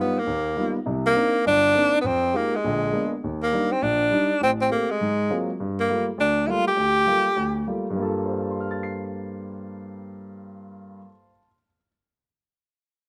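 A dry sound with little reverb, captured outdoors, frames this moody, late-night swing jazz fragment taken from a longer piece. Up front, a breathy tenor saxophone carries the melody with vibrato and a soft attack until 7.6 seconds, while a concert grand piano accompanies with deep bass and long sustain, continuing alone to 11.9 seconds. The harmony moves through rich altered and extended chords, opening on G7alt and settling on Gm9.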